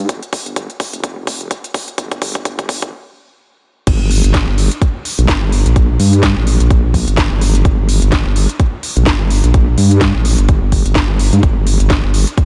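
Bouncy and swaggering, this bass house fragment, cut from a longer track, rides a swung 4/4 groove with a loose, strutting sixteenth-note feel. The vowel-sweep wobble bass sounds from the very start: a nasal, resonant, formant-filtered sine tone, dark and up front, thickened by chorus and overdrive and pumping through sidechain compression. It opens with a build-up in which a garage drum kit of cracking snare, crisp hi-hats and crash cymbal runs a fill alongside a tight, layered electronic kick. The fill gives way to a brief stop at 2.9 seconds before the drop lands at 3.9 seconds, where the bass carries on driving the groove. Both drum parts carry a tape-saturated character and were re-recorded in a large room, yet the overall mix stays dry and close.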